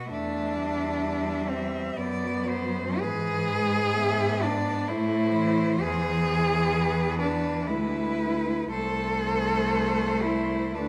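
Solemn and melancholic, this lyrical classical passage for a cello quartet moves at 63 BPM in a rubato 3/4 with uneven beats, beginning in E minor and turning toward A minor from 3.0 s. Four single bowed cellos, all with vibrato, share the texture: a rich, focused melody sits high, a clear, up-front second line plays beneath it, an expressive accompaniment adds soft attacks and portamento, and a close, prominent bass anchors the harmony, all set in the lush reverb of a recital hall.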